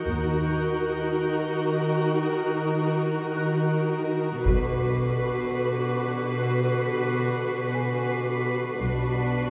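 This cinematic suspense cue, cut from a longer piece, carries an uneasy, ominous mood at a slow, straight pulse. A violin section carries the melody in a soft, floating sul tasto tone, while a second, close violin section adds high texture above it. Up front, a warm viola section fills in the accompaniment, and an intimate cello section with light vibrato joins a dark double bass section on the bass line. In the background, a glassy, ethereal glass harmonica holds slow-attack chords and a delicate, bell-like celesta adds sweet texture. When the harmony shifts at 4.5 s, a close, dry taiko ensemble struck with hard sticks enters, stopping at 6.6 s. The whole is heard from further back in a wet scoring-stage reverb.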